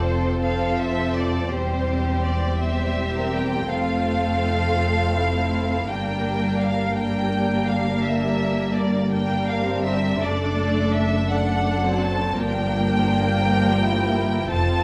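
Warm and serene, this slow romantic movement for string orchestra unfolds in a rubato 12/8 at about 56 dotted-quarter beats per minute, cut from a longer piece. The violins carry the melody up front with a rich, smooth, vibrato-laden tone, while a second violin line sits close and focused beneath it. Lush violas fill in the accompaniment, the section's bowed sound the most present of the ensemble. Underneath, a dark, woody cello section sits in the background, and the double basses add a bowed foundation with a smooth top. The harmony moves gently from F through C/E and Gm to D/F# and a closing Gm7, all bathed in the reverb of a recital hall with a 1.5-second decay.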